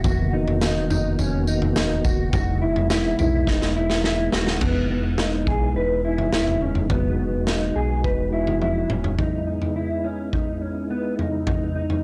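A raw garage drum kit sits up front in this floating, ethereal dream pop piece, its punchy kick, medium-tuned snare, tambourine, toms and crash carrying a saturated, gritty grit with a rolled-off top, and fills arrive at 3.5 and 8.6 seconds. A dark, clean electric guitar plays fingered arpeggios through ensemble chorus and tape echo, while a soft, flute-like tonewheel organ holds sustained chords colored by chorus vibrato and a slow rotary speaker. Beneath them, a deep, full sine sub bass with an added octave sustains its notes with a fast attack until it stops at 9.2 seconds. The harmony drifts from Bmaj7/E to Emaj7 in straight 4/4 time. The sound is a dry, gritty hardware recording, with light small-room reverb, transformer saturation and a cassette tape character, in a short passage cut from a longer piece.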